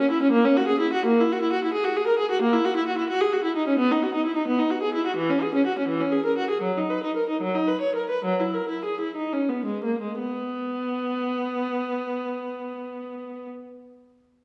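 Classical, baroque-style suite movement for unaccompanied viola, serene and dance-like, moving in 12/8 with a free, rubato feel. A single bowed viola plays alone from 0.0 to 13.5 s, its tone warm and even with vibrato and a smooth upper register, sitting up front against a wet recital-hall reverb. The pace eases between 4.7 and 10.2 s before a new section begins, and the passage is cut from a longer piece.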